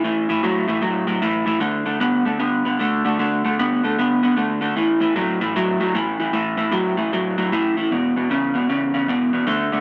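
A lone electric guitar, played through a small old amp, carries this laid-back, soulful blues fragment in A major, its picked tone slightly broken-up, lo-fi and compressed, sitting up front and bathed in a lush chorus. At 153 BPM in 4/4 with a swung eighth-note feel, it moves through A5, D5 and E5 power chords across the full 9.8 seconds, staying low in its range from E2 to B3. A moderate plate reverb with a long 3.5-second tail gives the cut a spacious glow.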